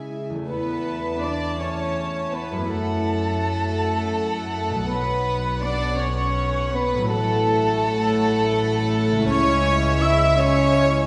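A moving, bittersweet passage of cinematic film score opens with a warm violin section, a dark, intimate viola section and a rich cello section, all bowed sul tasto, while a bright, ringing concert harp plays arpeggios in the background. At 0.5 seconds the rest of the orchestra joins: a clear, floating violin section takes the melody high and soft, a concert flute with expressive vibrato adds a second line above it, a mellow, distant French horn section holds sustained chords, and the double bass section anchors the bass alongside the cellos. The feel is rubato in a gentle 6/8, with harmony moving slowly from Esus4 through F#m7 and Bsus2 to a closing C#m. Soft attacks and pure string tone give the texture a suspended quality. The orchestra sits further back on a reverberant scoring stage, and the sound is softly rounded at the top.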